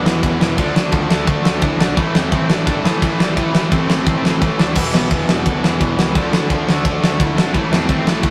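A big, up-front acoustic rock kit with a fat snare, punchy kick and rolled-off top drives this aggressive, angry punk rock excerpt at 173 BPM in A minor, entering at 0.1 s over a dark, overdriven lead guitar melody, a bright cranked stack guitar riff, a double-tracked tight distorted guitar riff, a very quiet sludgy distorted guitar and a growly fuzz picked electric bass, the guitars and bass set back behind the drums in a rough rehearsal-room recording with light reverb.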